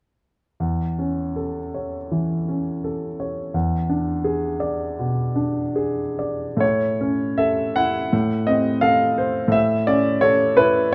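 Lyrical and hopeful, this short excerpt from a romantic character piece for solo piano moves in 4/4 with uneven, rubato beats. The clear grand piano sits up front with a smooth, vintage tone and short sustain, ranging from E2 to F#5 under light reverb and close, detailed miking. It opens on A/E, touches E7 at 3.5 seconds, and after a new section at 6.6 seconds passes through a diminished seventh chord before settling back on A.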